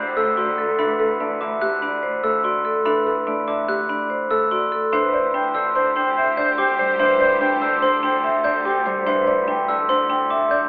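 Bright and propulsive, this minimalist classical pattern piece at 145 BPM in 5/4, cut from a longer work, sets a ringing hard-mallet vibraphone melody with slow motor vibrato over sparkling glockenspiel and buzzing, woody marimba arpeggios, fingerpicked Celtic harp accompaniment and a rich, expressive cello holding a low bass, while a clear clarinet second line and lush strings in the background sound briefly at the start and return from 4.9 s to 8.8 s, the recording carrying a wet studio reverb and a telephone-like tone.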